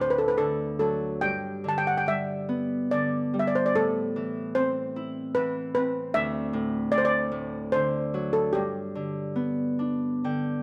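A metallic, shimmering steel pan carries the melody up front, its lead pan struck with hard rubber sticks and ranging from G4 to A5 across this short excerpt of a longer Celtic folk piece. Beneath it, a fingerpicked Celtic harp supplies a warm, ringing acoustic accompaniment that spans from D2 to G5 and sits up front as well. The mood is tender and pastoral, set in G major at 74 BPM in 3/4, with uneven beats and a rubato feel that let the phrases breathe. The harmony moves from D to G, through A minor and a bare D5, then back to D and G. Close, detailed microphones and light reverb keep the sound intimate, and the harp adds a brief fill from 9.8 seconds to the end at 10.6 seconds.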